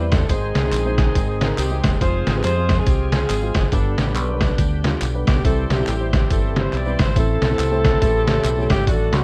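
Uptempo gospel at 140 BPM in C major, this short cut from a longer piece feels uplifting and hopeful, with a swung eighth-note lilt. A tight saxophone section carries the melody with a soft attack, vibrato and a smooth, jazzy top, while a dark, woody upright piano with audible action noise sits in the background alongside a bright, shouting tonewheel organ that holds sustained chords through light overdrive, chorus vibrato, key click and a slow rotary speaker. Up front, a deep dub fingered electric bass gives round, punchy low notes, and a trip hop sampler-style drum kit with a thumpy kick, medium-tuned snare and hi-hat comes in at 0.1 seconds, sounding compressed, pitched down, muffled and gritty like a vintage 12-bit sampler re-recorded in a small room. Tambourine, tube shaker and group handclaps add light acoustic percussion in a small room. The harmony moves from Ab through Fm, G and C before turning to Am and A7 near the end. 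The dry mix has the rough feel of a home demo on cassette tape.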